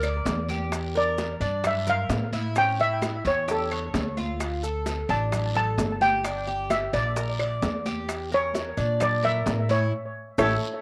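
Warm and sultry, this short Cuban son and guajira cut moves at 130 BPM in a straight 4/4, cycling through Gm, Em7b5 and A7 before a band accent at 9.9 seconds. Up front, a shimmering lead steel pan, struck with hard rubber sticks and colored by cassette tape and analog delay, carries the melody over metallic, picked double-string Cuban tres arpeggios and a dark, woody pizzicato upright bass. Tight, high-tuned bongos sit in a small room, while ringing congas, distant metal-shell timbales, woody claves, grainy maracas and a raspy guiro (entering at 0.3 seconds) stay in the background of this snug, wet booth home cassette recording.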